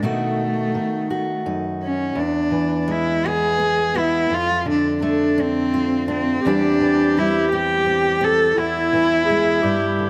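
A close, bowed cello carries the melody in this melancholic, intimate folk-pop ballad in 6/8, its airy sul tasto tone, soft attack and light vibrato sitting up front with a touch of tape echo. A bright, fingerpicked steel-string guitar accompanies throughout, and at 6.4 seconds a mellow, distant clarinet enters with a second line over chords moving from B7 through E, Dm/F and Cadd9/E back to E. Light reverb and detailed close miking frame this short excerpt from a longer piece.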